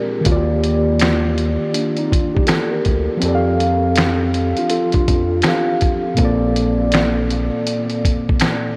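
Muted, felt-like synth keys sit up front in this nostalgic, cosy lo-fi hip hop excerpt, their soft, intimate tone thickened by chorus and a cassette-tape patina as they move through Ebmaj9, F and Bbmaj9 with a swung feel. A muffled, sampler-style drum kit with a thumpy kick, snaps and hi-hat comes in at 0.3 seconds alongside a deep, round analog bass, while a mellow tine electric piano with analog delay drifts in the background until 6.0 seconds. The whole dreamy mix is soaked in a huge ambient reverb.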